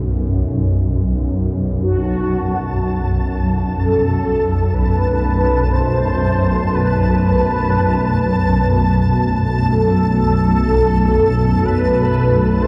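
A swarming, warbling drone opens this vast, ominous dark ambient piece in free time, sitting up front with a filter sweep running through it. At 1.8 s a round, horn-like synth lead enters with vibrato, phaser, chorus and a diffuse delay, followed at 2.1 s by a flickering, grainy texture high above and at 2.6 s by a bright, resonant sawtooth pad holding sustained chords. The drone and grainy texture carry their own built-in reverb, and the whole mix sits in a huge, wet reverb with a dark production.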